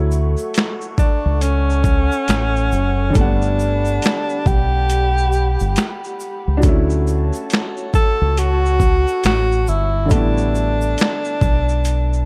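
Lo-fi hip hop with a dreamy, nostalgic mood and a swung, unhurried feel, cut from a longer piece. A woody, boxy upright piano with short sustain carries the accompaniment through a cassette-tape haze, while a warbling, detuned pad holds slow-attack chords in the background until about 10.1 seconds. A dark, round fingered electric bass sits up front beside a gritty, compressed boom bap kit of thumpy kick, medium-tuned snare, hi-hat, finger snaps and shaker, overdriven and re-recorded in a small room, with a grainy tube shaker tucked behind. From 1.0 seconds a mellow tenor saxophone takes the solo, jazz-styled with vibrato, scooped notes and a smooth top, trailed by tape echo. The harmony moves from Dmaj7 to Gmaj7 and back before settling on A9sus4, and the piano adds a short fill at 11.8 seconds in a dry, echo-heavy mix.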